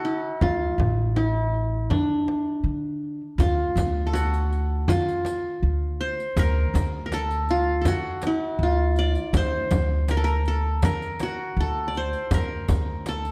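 A straight, steady 4/4 pulse anchors this passionate Arabic maqam ensemble passage, cut from a longer piece. Up front, a plucked qanun carries the melody with a bright-edged, triple-string ring and a touch of analog delay, while a woody, thumpy upright bass on steel strings supports it from below. A deep, large frame drum joins at 0.4 seconds with close, dry hits from hard hands. At 3.4 seconds a new section begins as the riq slips in from the background, adding jingling shimmer from a small room. The whole ensemble sits in a moderate recital hall reverb, with a dark, warm production.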